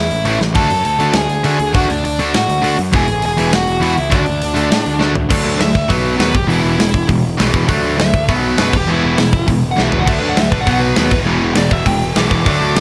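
A dark, smooth lead guitar with overdrive and digital delay and a growly fuzz bass open this energetic, rebellious punk rock excerpt at 202 BPM in E mixolydian, joined by a tight, up-front metal drum kit with bright cymbals in a big room and two picked rhythm guitars, one warm and set in the background, the other distorted. The opening passage moves in half time with drum fills, then at 5.3 seconds the lead takes a solo over chords among E, D and B. At 10.1 seconds a very quiet, double-tracked distorted guitar adds another riff, with light reverb around the band.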